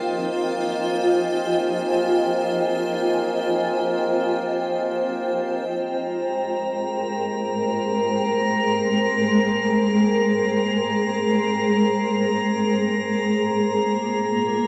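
Serene and warm, this ambient passage in free time is cut from a longer piece and unfolds in a vast, echoing space with a long cathedral-like reverb. A granular cloud pad sits up front throughout, holding sustained chords that move from Fm9 to Abmaj9 at 5.6 seconds and on to Bb7sus2 at 13.2 seconds; its sound is cloudy, blurred and full-bodied, built from detuned sine tones with slow attacks and long releases. Alongside it, a hand-pumped harmonium holds a reedy, nasal drone on Bb3 that breathes quietly in the background before stopping at 5.6 seconds. High above, a glassy texture of drifting overtones sits between Bb5 and C6 for the whole passage, calm and sustained, with chorus and its own reverb. The result is a soft, evolving haze of held harmony that seems to hang in the air.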